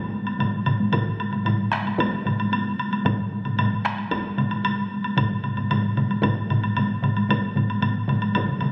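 A straight 4/4 pulse at 113 BPM drives this powerful Japanese traditional taiko ensemble piece, a short cut from a longer performance. A distant taiko ensemble struck with hard sticks opens at 0.1 seconds, soon joined by close taiko ensembles played with heavy sticks, one of them dry, a woody woodblock and solo taiko drums set in the background. The sound carries a wet scoring-stage reverb and the club-like ambience of a phone recording made in the room.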